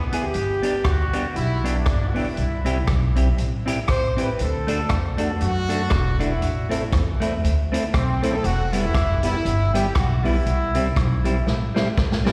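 A clear, punchy horn section carries the melody over a woody pizzicato upright bass from the start, with a clean semi-hollow electric guitar and a mid-forward vintage drum kit with a punchy kick joining almost at once, in a cheerful, upbeat ska cut from a longer piece, at 119 BPM with a light swing. The horns carry tape and slapback echo, the guitar has spring reverb, and a lightly overdriven tonewheel organ with key click and slow rotary speaker enters with background stabs at 4.7 seconds, as the chords move through G, C, D, Am, Em and C. It sounds like a live gig heard through the venue's PA, with recital hall reverb and vinyl crackle, and a drum fill closes it at 11.5 seconds.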